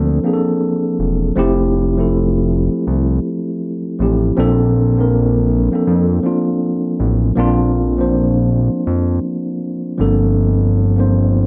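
A fat, saturated analog bass with a sawtooth edge and fast attack sits up front, sustaining thick low notes beneath a mellow tine electric piano whose clean chords carry a cassette-tape tint and a built-in speaker character. This nostalgic, dreamy hip hop fragment has a relaxed swung sixteenth-note feel and moves from a rootless Gm11 through Fmaj9 and Bbmaj9 before returning to Gm11 at 10.0 seconds. Both parts play together throughout the cut, wrapped in light reverb.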